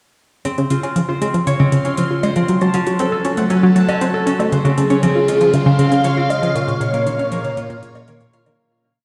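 Drenched in a huge, wet ambient reverb with a stone-room echo and a cassette-tape haze, this short, whole piece of sequencer-driven space music feels expansive and luminous, moving at 118 BPM in a straight 4/4 in Db major. Up front, a tight sequenced synth drives an eight-step repeating riff, its detuned sawtooth and square-wave tone shaped by a quick filter pluck and softened by chorus and analog delay. Around it, a swirling, warbling vintage string machine fades in from 0.5 seconds with bright sustained chords that pass through Dbmaj7, Gbm and Bbm, its moving-notch phaser and ensemble chorus adding to the shimmer. A fingerpicked concert harp rings out a nine-step arpeggio loop that drifts against the bar under analog delay, while an electronic hi-hat and low woodblock tap a light, metallic, tape-softened machine pulse in the background. At 4.8 seconds a mellow, round, horn-like synth lead enters with soft-attack call phrases built from short motifs, and from 5.9 seconds the whole piece begins to fade out.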